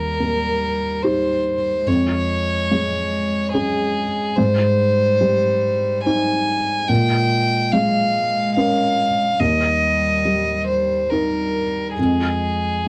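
Neoclassical piano and strings at 72 BPM in a rubato 3/4, this short cut from a longer piece feels hopeful and intimate, moving through Eb, Db/F, Abmaj7 and Bbm7 harmonies. A rich, floating solo violin carries the melody sul tasto up front, while a clear, faintly nasal cello plays a soft second line in the background, and a felt-muted upright piano supplies a mellow, dark accompaniment with audible action noise. All three parts carry a cassette tape character, set in a moderate booth ambience that suits the home recording.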